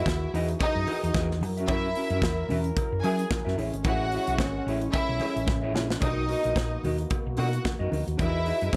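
A swung sixteenth-note disco groove drives this joyful, danceable excerpt, with a punchy, up-front studio drum kit and a round, hollow-body fingered electric bass anchoring the beat, while very quiet ringing congas and a metallic cowbell join from 0.1 seconds. A clear, smooth symphonic string section carries the second line up front over mellow French horn chords and a clean electric guitar with tremolo, moving from Emaj7 through F#7 and Amaj7. A drum fill at 5.5 seconds leads into Bmaj7, all set in a dark production with light reverb.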